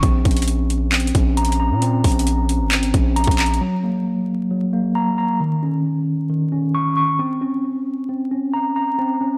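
Hip hop with a trap edge, this dark, hard-hitting clip is cut from a longer piece and moves at 134 BPM in 4/4 with a half-time feel, in Bb minor tuned to A4 = 439 Hz. A mellow tine electric piano plays clean arpeggios heard as if through built-in speakers and trailed by tape echo. Up front beside it, a punchy, heavy 808-style bass has a sine body, a noise layer, a fast attack and a decaying tail. An electronic trap kit plays alongside it from the start, with a hard-clipped kick, metallic hi-hats and handclaps carrying a tape-tinged color. Bass and drums stop at 3.6 seconds, leaving the piano alone through 9.4 seconds as the harmony, having opened on Bbmadd9, moves to Gb and Dbsus2/Eb before returning to Bbmadd9. Light digital reverb sits over a dry, gritty hardware sound flecked with vinyl crackle.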